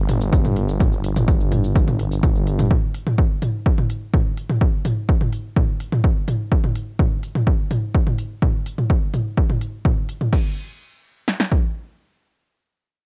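Melancholic and driving, this short excerpt from a longer melodic techno piece runs at 126 BPM in a straight 4/4, opening with a menacing, detuned sawtooth bass on G1 that swells and pumps to the sidechain before dropping out at 2.7 seconds, while an up-front electronic drum kit of punchy kick and snare carries on to 11.6 seconds, layered with crash, smooth hi-hats, shaker and toms until 10.4 seconds, all drums colored by studio reverb and cassette tape in a lightly reverberant home cassette recording.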